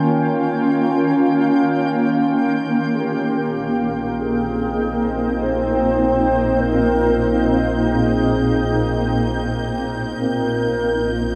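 A shimmering pad in free time fills a vast, echoing space in this reflective, serene ambient fragment, with muted felt-like synth keys barely audible under it until 5.8 seconds, a distant, reedy alto flute carrying the melody with vibrato from 2.9 seconds through shimmer reverb and tape echo, and a round sub bass and lush, bowed violin section fading in from 3.0 seconds over chords moving from Eb7 to Abmaj7/Bb and Bbm7.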